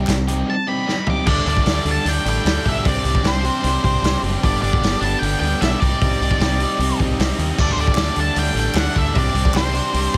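A loose, gritty drum kit with a punchy kick sits up front in a straight 152 BPM groove, anchored by a growling, overdriven fingered bass, while crisp handclaps flick in briefly at the start and return in the background around 8.0 seconds in this wistful yet upbeat indie rock passage. Two overdriven guitars carry the riff: one picked and warm, the other a bright, cranked stack tone set further back and coloured by lush chorus and analog delay. A dark octave-fuzz lead guitar sings the melody over chords moving from Cm through Dsus4, Csus2 and Gadd9, and after a drum fill at 0.9 seconds a very quiet, flute-like tonewheel organ enters at 1.3 seconds with sustained chords through a fast rotary speaker, all in a light reverb.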